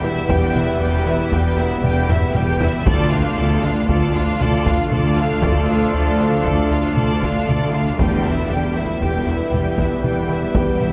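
Drenched in a cathedral-like reverb, this tense, relentless piece of hybrid orchestral and electronic film score moves at 117 BPM in 5/4 in D dorian, with a clear, distant violin section carrying the melody over a lush second violin line and a very quiet, rich viola section. Beneath them, a glassy FM pad, a mellow French horn section and a roomy, very quiet trombone section hold sustained chords, while a punchy, wave-folded analog bass plays a riff alongside dark, woody cellos and double basses on the bass line. A close, dry taiko ensemble struck with hard sticks enters at 0.3 s and plays a fill from 2.1 to 2.9 s, as the harmony moves from Em to Dm and back to Em.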